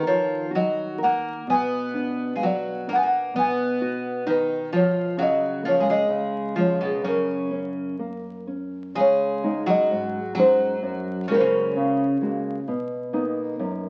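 A fragment of a longer piece, this tender, nostalgic fado-style ballad opens at 0.0 seconds with all three parts together: a soft-mallet marimba carrying the melody, a picked twelve-string acoustic guitar on a second line, and a nylon-string guitar underneath in accompaniment. The tempo sits at 64 BPM in 2/4, taken with a free, rubato feel in F# major. The marimba leads with a woody, round tone from its padauk bars. The twelve-string sits up front with a shimmering, octave-doubled, full-bodied sound, while the thumb-plucked nylon-string guitar has a small, warm voice. The harmony moves from D#m through Bm and B before settling on F#, then drifts into Dbsus2, Gbadd9 and Cbmaj7. The marimba and twelve-string both stop at 12.2 seconds, leaving the nylon-string guitar alone until 13.9 seconds. Everything is heard through a moderate large-studio reverb and the crackle of a very old 78 rpm record, giving it a faded, bygone atmosphere.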